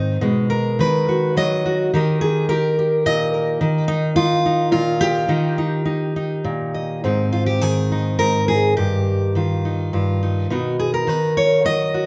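A moderate recital-hall reverb surrounds a jumbo steel-string acoustic guitar that sits up front, its fingerpicked tone bright and full-bodied with an audible finger squeak. This gentle, warm solo folk piece moves at 105 BPM in a straight 3/4, cut from a longer work and drifting from B6 to Ebadd9 before turning at 7.0 seconds toward Ab, Ebadd9/G and finally Bmaj7.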